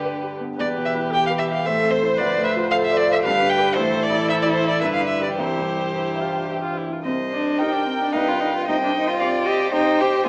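A wet recital-hall reverb surrounds this short cut from a longer piece, heard through a small-speaker sound. It is a quick, graceful and spirited classical-period movement for piano quintet in 3/4 at 112 BPM, played with a rubato feel. A rich, up-front violin carries the melody with smooth, even bowing and vibrato, while a second violin and a close-miked cello bowed with steady vibrato shape second lines beneath it. The viola adds expressive portamento to its accompaniment, and the baby grand piano supports everything with an open tone and long sustain. The music moves through C major with chords such as Am, Dm7 and G7 before turning to C minor at 7.1 seconds for the final stretch, which runs to 10.3 seconds.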